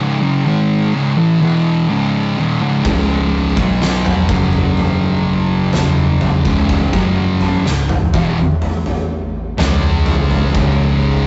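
Two thick fuzz guitars open the track together, one warm and one dark, both up front and distorted, grinding out a sludgy, ominous C# minor riff at a slow 62 BPM that shifts to F#5 and back. At 2.8 s an oversized, low-tuned acoustic drum kit comes in with a punchy kick, fat snare and toms, sounding gritty and saturated in a bright, pumping stone room. A round, hollow-body picked electric bass with overdrive sits in the background from 2.9 s, all captured as a rough rehearsal-room take of stoner and doom metal, cut from a longer piece.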